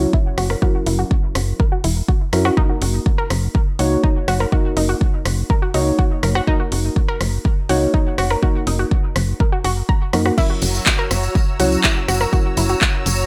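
A deep, nasal chord stab with chorus and dub echo opens this hopeful, euphoric progressive house passage at 123 BPM, pumping against a tight, ring-modulated sawtooth sequencer bass, a punchy electronic kick and a pop drum kit of handclaps, rim clicks, crash and bright hats. A round, warbling analog pluck spins vintage-toned arpeggios through its own chorus and echo over chords moving from F#7 to D#m/F#. At 10.4 seconds a lush, detuned supersaw pad and a jingly, close-miked tambourine join as the harmony returns to F#7, all within digital ambience in this section cut from a longer track.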